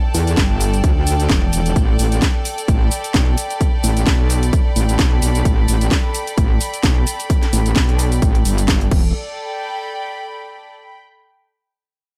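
Set in a digital ambience, this bouncy, swaggering bass house passage, cut from a longer piece, runs at 130 BPM in 4/4 with a 56% swing on the sixteenths. A metallic FM wobble bass sits up front in the low register, saturated and compressed with chorus, its sustained notes pumping with sidechain. A punchy, overdriven electronic kick, re-recorded in a large room, drives the groove beside a layered house kit of cracking snare, bright hi-hats, shaker and crash cymbal, both carrying studio ambience. Above them a clear string section plays bowed sul tasto with a soft attack, its pure, floating tone also breathing with sidechain pumping. The harmony moves from Em to Asus2, then to E7sus4 and A9sus4 near the close, where the drums and bass stop at about 9 seconds and the strings carry on alone until 11.0 seconds.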